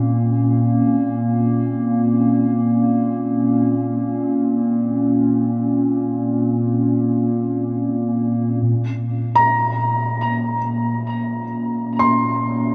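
A warbling, detuned tape-like pad holds sustained chords with chorus and a huge, dark reverb in this melancholic, reflective ambient fragment in free time, taking on a filter sweep from 8.6 s before a soft, felt-muted upright piano enters at 9.4 s with intimate high arpeggios trailed by tape echo.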